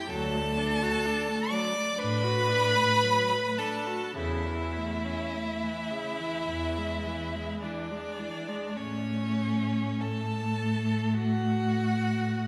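Bathed in the wet reverb of a concert hall, this tender, lyrical fragment of a slow romantic string quartet movement in A major drifts with rubato at 46-65 BPM: the first violin sings the melody with vibrato and expressive portamento over a smooth, even second violin line, while a rich, close viola accompaniment with soft attacks and its own gliding portamento sits above a clear, up-front bowed cello bass, the harmony moving from D through A/E and E before settling on A as a new passage opens at 8.8 s.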